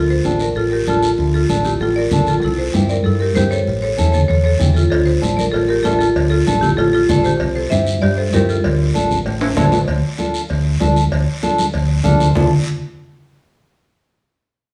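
A round, dark electric bass opens this fiery, danceable cumbia in D minor at 193 BPM, joined at once by a woody rosewood marimba melody played with medium hard mallets until 8.8 seconds, a small fingerpicked nylon-string guitar, thick-skinned congas struck with hard hands in the background and a raspy, close guiro, while ringing vintage cowbell and timbales arrive at 4.9 seconds, a drum fill lands at 9.4 seconds, and a wet studio reverb places the band further back in the room.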